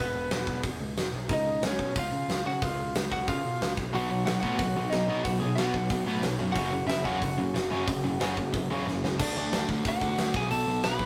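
Urgent and angry, this punk rock clip in a straight 4/4 drives hard from the first second. A bright, twangy lead guitar, slightly broken-up and compressed, carries the melody from the start over a fuzzed, overdriven picked bass, with a big acoustic drum kit arriving at 0.3 seconds, its fat snare, punchy kick, crash and hi-hat sitting up front in a bright stone room. At 3.9 seconds two distorted rhythm guitars join on the riff: a dark, sludgy overdriven one set in the background and a tight, bright one pushed up front. A drum fill at 8.9 seconds leads into a new section at 9.2 seconds, where the tight guitar drops out and the harmony moves through D toward B5. The whole take has the rough feel of a rehearsal room, with light reverb and tube saturation, and it is cut from a longer piece.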